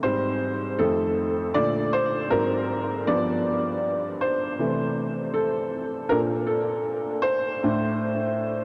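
Cosy and mellow, this short hip hop excerpt cut from a longer piece moves at 79 BPM in 4/4 with a 16th-note swing. A solo upright piano, woody, slightly detuned and boxy, sits up front through a low-pass filter and delay, wandering through jazzy chords such as Abmaj7, Bbmaj9 and G7 before shifting to Bbmaj7 at 6.1 seconds and then Amadd11. A huge ambient reverb with a long tail soaks the mix in a dreamy haze.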